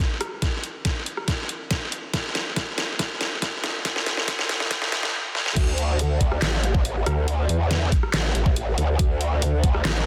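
Heavy wobble dubstep at 140 BPM in 4/4 with a half-time feel, this cut from a longer piece feels heavy and chaotic. A dubstep drum kit of crash cymbal, handclaps, hi-hat, rim click and a deep snare sits up front, re-recorded in a large room, and is joined by a knocking, tape-warm electronic kick from 0.4 seconds. The opening is a build-up with a drum fill and a filter sweep running through it. At 5.6 seconds the drop arrives and a growl bass enters, aggressive and wobbling, detuned and saturated through a formant filter, with overdrive and chorus lending it a bright, up-front bite in the low register. A lush hall reverb surrounds the mix, and the dense, heavily limited modern master keeps the whole track pressing forward.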